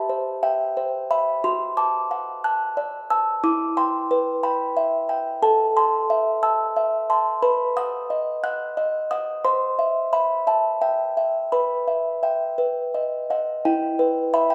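A classical lullaby for solo music box in 6/8, moving gently at 60 BPM with an eerie, wistful mood, settling into E minor after 5.4 seconds and closing on an E minor chord at 13.7 seconds. The delicate, tinkling plucked tones sit up front with a mellow, boxy character, ranging from E4 to F#6, while a wet recital hall reverb of 1.6 seconds lends a haunting halo. This short passage is cut from a longer piece, and the music box plays alone throughout its 14.5 seconds.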